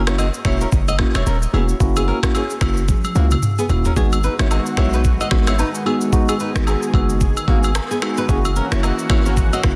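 A punchy, heavy 808-style bass sits up front in this sultry, smooth afrobeats excerpt, its sine tone with a noise layer hitting with a fast attack and decaying under a 111 BPM groove in 4/4 with a 58% swing on the 16ths, in G# minor. The produced afro-pop drum kit shares the front with a knocking kick, finger snaps, rim clicks, shaker and toms, and a soft-clipped snare, all re-recorded in a large room, plus a drum fill from 2.9 to 4.0 seconds. A clean, direct, mellow tine electric piano carries the accompaniment, while a fingerpicked classical nylon-string guitar plays a riff through a digital delay, and close, dry agogo bells and woodblock add egg shaker and group handclap colour. At 4.0 seconds a thick, warbling, vintage sawtooth pad in detuned unison arrives in the background with a slow attack, long release and chorus, as the harmony moves from a rootless G#7 to G#m7 and then F#7 at 8.3 seconds. 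Light reverb and a dense, heavily limited modern master keep the sound polished.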